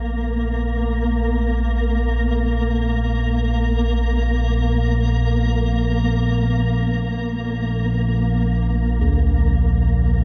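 Through the muffled haze of cassette tape and a small, lightly reverberant room, this desolate, ominous ambient excerpt rests on an up-front analog drone, nasal and evolving with lush chorus and a filter sweep throughout, beneath a flickering, grainy granular texture soaked in its own reverb, while distant bronze gamelan-type bossed gongs, metallic and beating, sound arpeggios from 0.0 to 2.2 seconds and return at 9.0 seconds.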